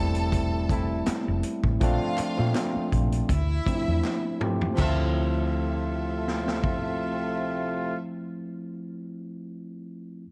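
Lush 1970s-style soul in D minor at 81 BPM, this short cut from a longer piece has a smooth, cinematic mood and a gentle swung sixteenth-note feel. An overdriven tine electric piano sits up front, gritty through a combo amp, carrying the accompaniment over rootless Fmaj7, then Bbmaj7 and Dm9, and it is the last part sounding, holding on alone until 10.3 seconds. Beneath it, a round, punchy hollow-body short-scale electric bass plays fingered lines, while a vintage acoustic drum kit with dark cymbals, a medium-tuned snare and a punchy kick marks time with hi-hat, crash and toms, including a fill from 4.0 to 4.8 seconds that leads into the second section. A bowed violin section, focused and close with vibrato, adds a second line above, and a mellow horn section with a smooth top punctuates with tight stabs. Very quiet, close and dry group handclaps join briefly, and the whole mix has a dark, warm production with light reverb and small room ambience.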